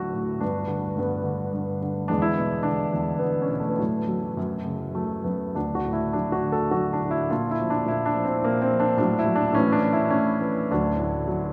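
Classical, lyrical solo piano in D major, this sunny, hopeful excerpt moves at 105 BPM in 3/4 with a flexible rubato feel, cut from a longer piece. The grand piano sits up front with a warm tone and short sustain, ranging from D2 to A4 across the full 11.5 seconds, its harmony passing through G, E7 and F#m/A before a turn to Bb at 7.3 seconds and a settling onto D at 10.7 seconds. A wet cathedral reverb with a 5.8-second decay surrounds the instrument, giving it the spacious resonance of a church or concert hall.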